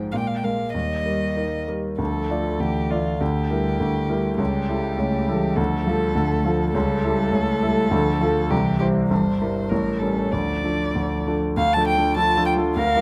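Dramatic and urgent, this quick classical-period piano trio movement in 2/4 unfolds with a rubato feel, cut from a longer piece. A concert grand with deep bass and audible action noise carries the accompaniment up front, while a con sordino violin, veiled and dark with vibrato, sings the melody close by, and a muted cello adds a soft-attacked second line in the background. Light reverb and close, detailed microphones frame a harmonic path that moves from Dm through A7/C# and Edim/G to an A7b9 before settling back on Dm at 10.3 seconds.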